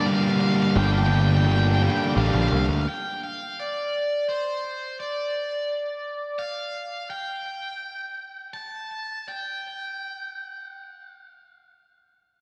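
A growling picked electric bass, overdriven and up front with a bright edge, stands out in this brooding, cinematic post-rock fragment cut from a longer piece, joining at 0.8 s beneath a sludgy, double-tracked distorted guitar riff. Set in G minor at 85 BPM in 3/4 with an uneven beat, the opening rests on a Gm7 chord, and both the riff guitar and bass drop out at 2.8 s. An overdriven electric guitar carries the melody in a high register from the start until 10.8 s, its picked tone colored by spring reverb and delay, continuing alone after the heavier parts stop. The passage slows down from 7.1 s to the end, stretching the unaccompanied melody. A lush hall reverb soaks the whole mix, giving it a dreamy atmosphere.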